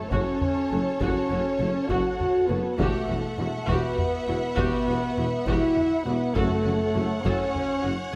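A huge, dark impact, barely audible, opens this dramatic, epic orchestral film score cue together with a single timpani stroke, as warm French horns and bright, very quiet trombones lay down sustained chords in F# phrygian. Moving slowly at 67 BPM in a straight 6/8, the harmony passes from F#m to Emadd9 and returns to F#m at 6.4 seconds, where the timpani, struck with medium mallets, comes back until 7.2 seconds. A dark violin section carries the melody in the background with vibrato and portamento, while a second, focused violin section sings a lush second line above rich, even violas that fill out the accompaniment. The low end is built from a very quiet cello section, a smooth double bass section in the background and a mellow, distant tuba, all under a compressed, saturated taiko ensemble playing with heavy sticks. A moderate scoring stage reverb gives the orchestra a sense of space in this short cut from a longer piece, tuned to A4 = 436 Hz.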